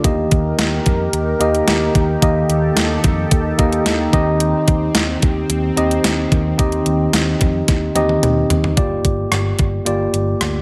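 This short cut from a longer 1980s-style pop piece feels dramatic and moody, moving at a straight, steady pulse in 4/4. Up front, a clean tine electric piano carries the accompaniment with a warm tone heard as if through its built-in speakers, while a picked electric bass adds an amped, warm low end beneath it. A chorused pulse-width pad holds sustained chords with a shimmering, detuned, retro character, its slow attack and moving notch giving it a mellow glow until it drops out at 8.7 seconds. The 12-bit digital drum machine sits prominently in the mix with a thumpy kick, medium-tuned snare, rim click, hi-hat, tambourine and toms, all carrying an electronic, sampler-style sound treated with overdrive and gated reverb. A drum fill at 7.7 seconds leads into a new section at 8.8 seconds, where the harmony shifts from Eb and Cm/Eb to Gm7, all under a light overall reverb.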